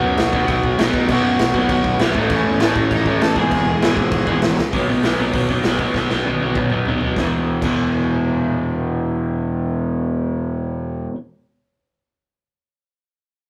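A rough rehearsal-room recording with light reverb captures a rowdy, upbeat punk rock cut in E major at 198 BPM, its raw garage drum kit sitting up front in a pumping stone room with a punchy kick, a medium-tuned snare and a gritty, saturated edge. A double-tracked, crunchy overdriven guitar drives the riff throughout while a growly fuzz bass sits in the background, and a biting lead guitar carries the melody only until 4.4 seconds. The drums play a couple of fills, including one from 5.9 seconds, and stop at 7.7 seconds, leaving guitar and bass to carry the closing E5 chord.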